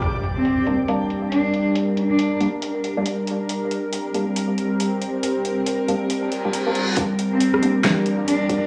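A brooding, meditative deep dubstep excerpt in G minor at 138 BPM, with a swung half-time feel, opens on an electronic impact over a filtered deep house drum kit of fat snare, metallic hats, handclaps and rim click. A bright, detuned sawtooth drone holds sustained chords up front with phaser and 12-bit sampler grit, a hollow, wave-folded organ stab sits in the background with chorus and dub echo, and a dark, woody solo cello carries the melody with vibrato and dub echo. After a reverse cymbal at 6.3 s, an electronic kick joins at 7.0 s for a build-up with a riser and a filter sweep on the stab, all set in spring reverb, small-room ambience and the haze of a home cassette recording.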